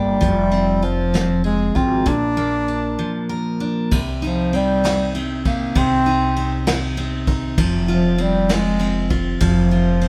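A melancholic, dramatic six-eight pop ballad excerpt in which a breathy bass clarinet with light vibrato carries the melody up front over a full-bodied picked jumbo acoustic guitar, a woody, thumpy pizzicato upright bass and a dark vintage brush kit with a punchy kick, the band playing live in one room with moderate studio reverb, with a break at 3.0 seconds before moving into a new section at 3.9 seconds.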